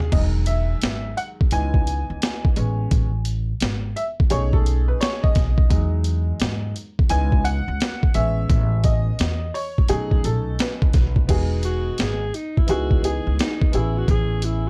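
A swung 86 BPM boom bap groove from a compressed, gritty sampler-style kit, with thumpy kick, high-tuned snare, hi-hat, toms and crash, carries this smooth, relaxed jazz-hop excerpt in E major, where a worn, boxy, slightly detuned upright piano with long sustain solos over Emaj9, C#m7, Amaj7 and B13 changes, a woody, growly pizzicato upright bass sits up front, and at 11.6 seconds a breathy, distant alto saxophone with vibrato and scooped notes takes the solo, the whole mix dry and hardware-recorded onto cassette tape.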